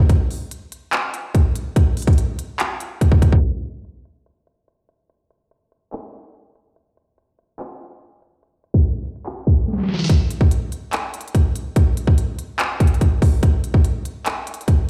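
A brooding, eerie hip hop excerpt at 144 BPM opens at 0.1 seconds on an electronic trap drum kit in a half-time 4/4 feel, with a hard-clipped kick, sharp snare, crisp hi-hats and handclaps sitting up front. The sound is heard as if through a big sound system in a bare stone room, low-pass filtered and carrying light reverb. A filter sweep runs from 3.4 to 10.1 seconds and ends in a short drum fill before the final section.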